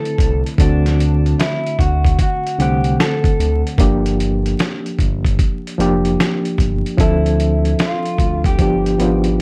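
Lo-fi hip hop at 75 BPM in 4/4 with a swung sixteenth-note feel, this short excerpt cut from a longer piece carries a melancholic, nostalgic mood under a layer of vinyl crackle and light reverb. A barky, reedy electric piano sits up front with accompaniment from the very start, its bright tone lightly overdriven and shimmering with fast tremolo and plate reverb. Beside it, a dark, slightly broken-up electric guitar played through a small old amp picks a lo-fi melody, trailed by tape echo and plate reverb. A gritty, compressed sampler-style drum kit comes in at 0.1 seconds with hi-hat, a thumpy kick and a medium-tuned snare, sounding tape-warm and re-recorded in a small room. From 0.2 seconds a smooth, dark synth bass glides between sustained notes with vibrato and portamento, while the harmony moves from C69 through D7, Gm7 and Dm7 to G7.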